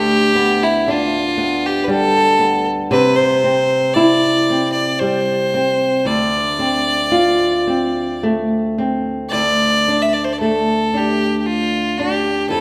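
Set in the moderate reverb of a church or concert hall, this mournful, haunting excerpt of a Celtic slow air in a rubato 3/4 places a clear, smooth bowed fiddle melody with light vibrato up front over a dark, fingerpicked acoustic flamenco guitar accompaniment, with a new section arriving at 9.3 seconds.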